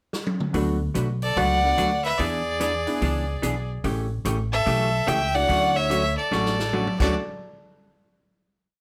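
An intense, up-front fiddle carries the melody in this playful, cheerful western swing piece, singing short song-like motifs with light vibrato and a smooth top. A second fiddle, focused and slightly boxy, follows with a bowed harmony line mostly in thirds, both fiddles entering at 1.2 s. The tune swings at 145 BPM in D major, moving through D6, E7, A7 and Dmaj7 after a brief pickup. A big-band drum kit opens with a fill at 0.1 s, then keeps time on the hi-hat with a punchy kick and medium-tuned snare, adding another fill near the end. From 0.5 s a woody, bright upright bass plays a pizzicato two-beat of roots and fifths with walk-ups, while a dark, clean hollow-body electric guitar picks a compressed four-to-the-bar rhythm and an upright piano sits in the background with syncopated comping in close voicings. A moderate club reverb gives the small combo a lively, natural sense of space.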